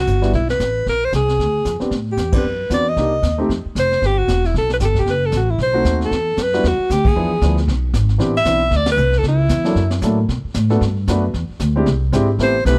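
A swung 4/4 pulse underpins this sophisticated, relaxed slice of small-group jazz, with a vintage brush kit adding a high-tuned snare, punchy kick and rolled-off top, and a woody pizzicato upright bass sitting up front. A bright, close-miked alto saxophone carries the melody with light vibrato and scooped notes until 10.0 seconds, returning briefly at 12.4, while an intimate grand piano with audible action noise, deep bass and long sustain comps alongside, dropping out briefly between 3.5 and 5.7 seconds. Band accents punctuate the swing, and the dry, close 1970s-style studio sound keeps every player near.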